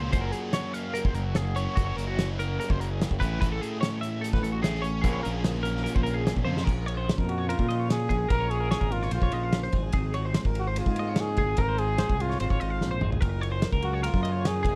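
Wistful yet bright, this short math rock and midwest emo passage is cut from a longer piece and moves in a straight 4/4 over lush major-seventh and ninth chords. Two clean, twangy twelve-string electric guitars run throughout, one picking chords under a vibrato effect while the other, set further back, picks arpeggios through tremolo and slapback echo. A biting, double-tracked overdriven guitar carries a riff over the opening 6.7 seconds, alongside a growling fingered bass with overdrive that sits up front and gives the low end a gritty edge. The loose indie drum kit is punchy and close, with a fat snare, dark cymbals and a pumping room sound, and it marks the change of section with a fill at 6.5 seconds and another near 13 seconds. From 7.3 seconds a breathy trumpet takes the melody, intimate and whispered, with scooped notes and a slapback echo. The mix is dry, with little reverb.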